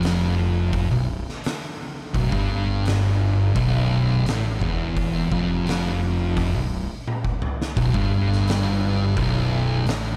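A straight 4/4 pulse at 85 BPM drives this ominous, sludgy slice of stoner and doom metal, cut from a longer piece. Two thick fuzz guitars carry the riff in a low register, both dark and distorted with a picked attack, one placed up front and the other just behind it. Beneath them a fuzz fingered electric bass growls through overdrive and tube saturation, its direct-and-amped tone warm and gritty with fuzz. An oversized, low-tuned acoustic drum kit works hi-hat, boomy kick, fat snare and toms in a bright stone room that pumps, its sound saturated and gritty. A drum fill from 7.1 to 7.8 seconds is the one clear event before the kit stops at 10.0 seconds. Light reverb and a dark, warm production wrap the whole passage in a murky weight.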